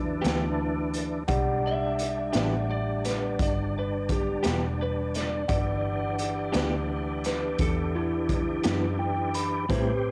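A mellow tine electric piano, a reedy, bright tonewheel organ with slow rotary speaker and key click, and a round, foam-muted fingered bass open this brooding, mournful slow blues in E minor at 57 BPM in 12/8, holding an Em7 chord as a dark, slightly broken-up guitar with harmonic tremolo and a gritty, punchy garage drum kit join almost at once, before a compressed slide guitar played with fingerpicks enters at 1.7 s with an analog-delayed solo line and the electric piano adds a short fill at 8.6 s, all captured with cassette-tape grit in a small, lightly reverberant room.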